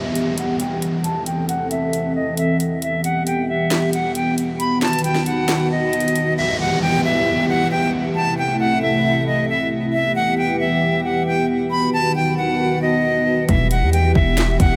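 Drenched in a huge ambient reverb with a seven-second tail, this dreamy, dark trap excerpt at 135 BPM moves in a half-time feel in E harmonic minor, cycling through Em, Am and B chords with a melancholic weight. A breathy, reedy concert flute carries the melody up front, its bright metal tone softened by a gentle attack, vibrato, a low-pass filter and tape echo. Beneath it, a deep analog pad of detuned sawtooth and triangle layers with a sub octave holds sustained chords, its slow attack and long release thickened by chorus and shaded by a low-pass filter, while a filter sweep shapes the opening 6.4 s. The electronic trap kit, with its hard-clipped kick, sharp snare, handclaps and metallic hats, runs from 0.2 s to 6.3 s, and electronic downlifters drift through the background. At 13.5 s the drums return alongside a punchy, heavy 808 bass with a sine body, noise layer and fast, decaying attack, and a very quiet, lush symphonic string section adds a brief bowed, woody stab.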